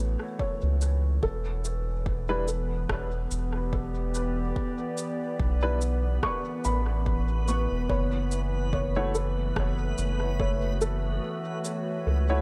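Ambient dub at 72 BPM in E dorian, hazy and meditative, cut from a longer piece and moving between F#m7 and Em7 with a light 16th-note swing. A warbling, lo-fi pad with chorus and built-in reverb holds sustained chords while a felt-muted upright piano, intimate with audible action noise, plays arpeggios through tape echo, all over a round, up-front dub sub bass. An overdriven electronic kick enters at 0.4 s, electronic cabasa and rim click carry dub echo, and from 2.3 s a dark, woody upright piano adds background stabs before a reversed, dreamy granular texture swells in at 2.6 s, all set in digital ambience.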